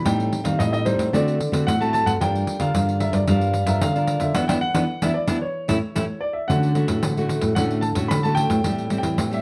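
Sunny and festive, this samba and choro passage, cut from a longer piece, sets a natural, up-front grand piano melody with long sustain over a fingerpicked classical nylon-string guitar accompaniment, a deep, full-bodied, thumb-plucked nylon-string guitar bass line with audible finger squeak, and a jingly, close, dry pandeiro, with a band accent from 4.4 to 6.5 seconds, all in a dark, warm production with moderate studio reverb.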